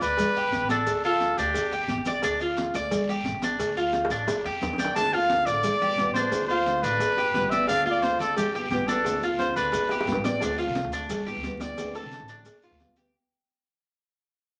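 A vibrato-laden trumpet sings a pop-style solo up front in this sunny, relaxed excerpt of Cuban son and guajira, moving briskly at 176 BPM in a straight 4/4. The bright, metallic Cuban tres plays picked arpeggios with its doubled strings throughout, while a woody, growly pizzicato upright bass sits low beneath it. High-tuned congas with a thin, vintage skin join tight bongos and cowbell played with soft hands, along with a raspy, very quiet guiro and grainy maracas in the background. The trumpet drops out briefly and returns at 4.8 seconds, and a dark, full-bodied nylon-string guitar enters in the background at 5.0 seconds. The harmony rocks between G and D minor, settling into Dm7 and G7 in the later bars. Drum fills mark the phrase ends, and a fade-out begins at 10.4 seconds, all set in a club reverb with a vinyl crackle and a softened top end.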